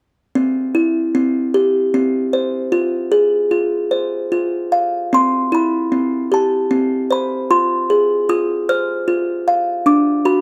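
Closely and intimately recorded with a touch of light reverb, this sleepy, gentle children's lullaby in a rubato 6/8 is carried by a lone music box from a large box, its delicate, tinkling plucked tones sounding dark and smooth up front as the harmony rocks between C and Ab6 before turning to D near 9.9 seconds, where the excerpt breaks off from a longer piece.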